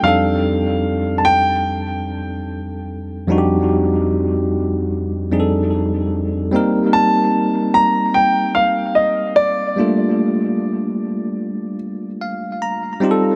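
Longing and sensual, this straight-feel R&B fragment sets a grand piano melody with short, up-front sustain over a bell-like tine electric piano carrying the accompaniment, both parts steeped in dub echo within a small, lightly reverberant room. The harmony moves from F13 to Cm7 at 6.5 seconds and then to Gm7. Once the piano melody stops at 11.8 seconds, the electric piano plays a brief fill on its own before the cut at 13.4 seconds.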